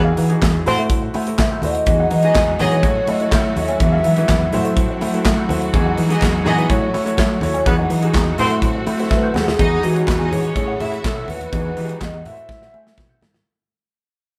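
A straight 4/4 disco groove at 124 BPM drives this joyful, celebratory cut from a longer piece. A punchy, polished acoustic drum kit with handclaps and low-tuned congas sits under a worn, lightly overdriven tine electric piano bass, a clear grand piano with audible action noise, and a dark, clean electric guitar with wah in the background. Tight, mellow horn stabs in octave doubling punctuate the band at 0.7 s, while an airy, unsteady alto flute with vibrato carries the melody over rich, soft-attack strings and a lush, focused second string line, all in a moderate stone room before a fade-out from 9.6 s.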